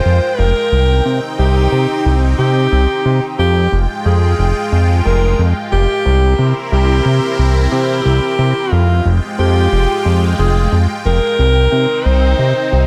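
A breathy, close-miked alto saxophone sings an intimate, whispered melody over a lush, detuned sawtooth pad that swims in chorus and phaser, opening this nostalgic yet driving synthwave excerpt. A fat analog bass arrives at 0.1 seconds, thick and up front with tube saturation and a filter sweep, while the saxophone's digital delay trails its soft-attack phrases. The harmony circles between Fmadd9, Cm and C7 in a straight, steady groove, all set in a studio ambience.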